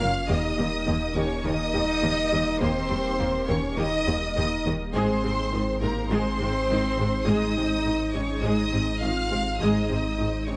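A lush violin section carries the melody high above the ensemble, bowed with vibrato and a soft attack, while a second violin line runs beneath it in a more focused tone. This tense, relentless cinematic cue blends orchestra and electronics. A woody viola section supplies accompaniment while distant, roomy French horns hold sustained chords, joined in the background by a hollow, flute-like pad thickened by ensemble chorus, and a very quiet, round pluck spins arpeggios through the middle register. The low end stacks a rich double bass section, expressive cellos and a deep sine sub bass. The harmony moves from Eb to Ab around 4.9 s, and the excerpt sits in a wet recital hall reverb with a softened top end, cut from a longer piece.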